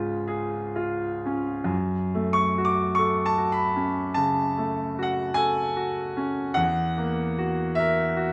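Rubato phrasing stretches a slow 4/4 pulse, moving between about 40 and 51 BPM in this short fragment of a romantic classical nocturne. A single concert grand piano plays solo, its brilliant upper notes reaching D6 while a deep bass anchors the range down to E2. Set in F# minor, the music feels melancholic and yearning. It opens on C#, settles onto F# minor at 1.7 seconds and moves to F#7 over E at 6.6 seconds. Long sustain lets the notes ring into a moderate recital hall reverb, while close, detailed microphones keep the instrument up front until the passage, cut from a longer work, stops at 8.3 seconds.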